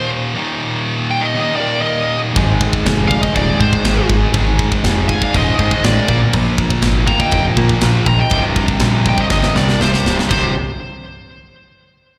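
Heavy and aggressive, this straight 4/4 heavy metal excerpt opens with a dark, high-gain lead guitar melody, treated with slapback echo and delay, over a bright, picked distorted guitar riff up front. A warm second lead line in the background joins at 1.6 seconds, and a tight distorted rhythm guitar enters at 2.3 seconds, followed at 2.4 seconds by a fuzzy, overdriven picked bass and an acoustic metal kit with bright cymbals, a tight kick and a medium-tuned snare. A drum fill at 9.3 seconds caps the passage, all of it heard through a venue's PA with a small-room ambience and recital-hall reverb, as if captured at a live gig.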